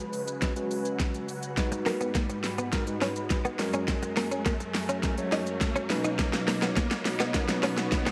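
A vintage, organ-like ensemble string pad with phaser, chorus and sidechain pumping and a background riser open this summery, euphoric dance-pop build-up in F# major at 104 BPM, joined by a layered, up-front electronic drum kit with knocking kick, fat snare, crisp hats and shaker playing a fill throughout, a mellow tine electric piano from 0.4 seconds and a clean, compressed, picked direct guitar riff from 1.7 seconds, all moving through C#7sus4, G#m7, F#add9 and Badd9 under a filter sweep and echo-chamber reverb in this excerpt from a longer piece.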